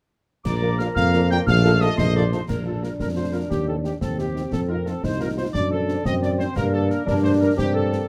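Closely miked and nearly dry, this proud, spirited excerpt of a military-style wind-band march in 6/8 puts a dark, punchy trumpet section on the melody over a tight, smooth-topped woodwind second line, a mellow, up-front tuba bass, warm vintage French horns in the background and acoustic concert snare, clash cymbals and bass drum, while a pure wooden piccolo with vibrato sounds until 2.4 s and clear trombone chords appear only at the opening, before a roomy, distant euphonium takes up a second line from 2.5 s.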